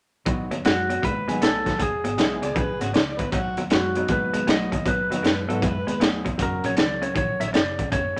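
This laid-back, rollicking electric blues shuffle in B major opens at 0.3 s with a crunchy, muffled breakbeat drum kit up front, a dark, round muted electric bass, a slightly broken-up guitar riff through a small old amp with spring reverb, and a woody upright piano with audible action noise tucked in the background. The band swings at 157 BPM over chords moving from B to E, back to B and on to F#, and a clean, twangy lap steel soon takes the melody with slide. An amplified, overdriven harmonica adds a gritty second line with tongue slaps and scooped notes between 2.4 and 6.0 s, and the mix sits in a moderate studio reverb.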